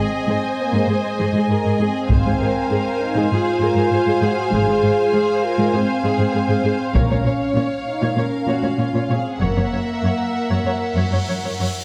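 A straight 4/4 pulse at 99 BPM drives this dark, relentless cinematic orchestral excerpt, with heavy-stick taiko hits landing at 2.1 and 7.0 seconds over a woody, up-front cello bass that is later doubled by soft-attack double basses. Two bowed violin sections carry a focused, vibrato-laden melody and a smooth higher second line above lush violas, while distant, roomy French horns hold dark sustained chords moving from Ab through Fm/Ab and Bbm to Gb7. A huge, bright cymbal swell rises at 10.8 seconds, and the whole orchestra sits in a moderate scoring-stage reverb.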